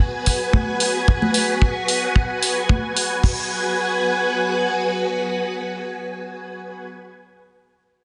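Groovy and cosmic, this short nu-disco clip rides a lightly swung sixteenth-note feel in 4/4, built on a lush G#m7 chord from a vintage string machine. The full string ensemble holds slow-attack sustained chords up front, its sawtooth tone thickened by a sub octave, a moving notch and ensemble chorus, with sidechain pumping giving the pads a rhythmic breath. Within the first second, a damped 70s drum kit enters with a tight, dry kick and hi-hat, alongside a layered, produced electronic hi-hat, both sitting up front. Congas with a small-room sound add acoustic percussion in the background. The drums fall away by 3.4 s, as a new section begins, leaving the mellow strings to carry on alone until 6.9 s, all bathed in a moderate plate reverb with a soft, rolled-off top end.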